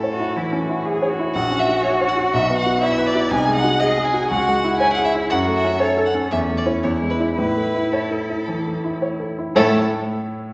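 A quick, graceful classical-period movement for piano trio opens at once with violin and baby grand piano together, in A major at roughly 108-124 BPM in 4/4, taken with a spirited, rubato feel. The violin carries the melody up front, its single bowed voice focused and rich with vibrato, while the piano accompanies close by with a warm, natural tone and short sustain. The cello joins at 0.1 s with a second line of its own, bowed by one player with a soft attack, expressive vibrato and portamento. The harmony moves from A through F#7/A#, Bm, G#7/B#, C#m and F#m before A/E and E7 bring it home to A at 7.4 s. A wet scoring-stage reverb surrounds the trio, and after the strings fall away at 9.9 s the piano rings on briefly until 10.5 s in this short passage cut from a longer piece.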